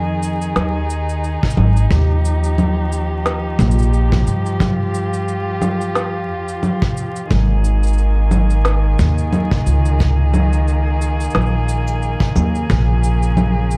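A growly, up-front pizzicato upright bass anchors this pastoral folktronica excerpt at 89 BPM with a gentle swing, beneath veiled con sordino string quartet chords carrying vintage sampler grit and plate reverb, an electronic shaker, woody snare and congas entering at 0.2 seconds, and a muffled, punchy kick from 1.4 seconds, all wrapped in a dark production with vinyl crackle as the harmony drifts from Dbsus2 through Ebadd9 and Absus2 to Bbm7.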